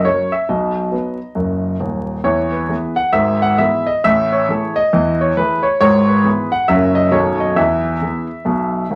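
Swinging and exuberant, this short excerpt of stride jazz moves at 135 BPM in 4/4 with a moderate swing feel on the eighth notes, set in E major. A solo grand piano carries the whole 9 seconds, reaching from D#1 deep in the bass up to F#5. Its tone is clear and intimate, sitting up front with a present, long-sustaining sound and the mechanical noise of its action audible beneath the notes. The harmony moves from B to E, passes through E/G# and a lush Amaj7, then turns through F#7 and B9 before landing back on E. A wet club reverb gives the room a lively glow, while a layer of vinyl crackle lends the recording a vintage surface.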